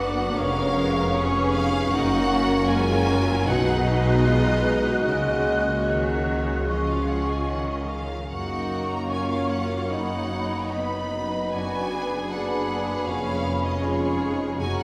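A lyrical, tender slow romantic movement for symphony orchestra opens at once with a rich, vibrato-laden violin section singing the melody over a focused, smooth top, while an airy large flute ensemble with crisp attack and a second, lush background violin section add countermelodies, all in a flexible rubato. Beneath them, a distant solo bassoon, a close viola section, a mellow, close-miked French horn section holding sustained chords and a very quiet, thumb-plucked concert harp rolling ringing arpeggios fill the accompaniment. A bright, bowed double bass section and an even, distant cello section carry the bass line, and the whole 14.8-second passage, cut from a longer piece, sits in the wet reverb of a church or concert hall.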